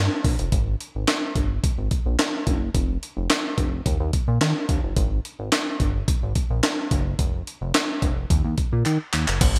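Early-eighties boogie funk at 108 BPM in a straight 4/4, this short, danceable cut from a longer piece has a slick, bright digital sheen and light reverb. A glossy, chorused synth bass blending pulse-wave and sawtooth tones sits up front from the start, ranging from F1 to Eb3 with a fast attack and sustained, evolving notes shaped by pulse-width modulation and a moving notch. A gritty, compressed, pitched-up breakbeat kit joins at 0.2 s with a thumpy kick, high-tuned snare, hi-hat, handclaps and crash under gated reverb, capped by a drum fill at 8.9 s.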